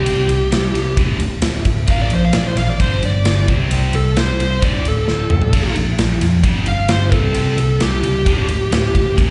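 Driving and aggressive, this hard rock excerpt from a longer piece is led by a dark, distorted lead guitar solo with slapback echo. Beneath it, a double-tracked stack guitar riff with its own slapback echo and a growly, punchy overdriven bass press forward, while an up-front acoustic drum kit with bright cymbals and a medium-tuned snare drops in a fill at 5.1 seconds. It sounds like a live gig heard through the venue's PA, with recital hall reverb and a muffled top end.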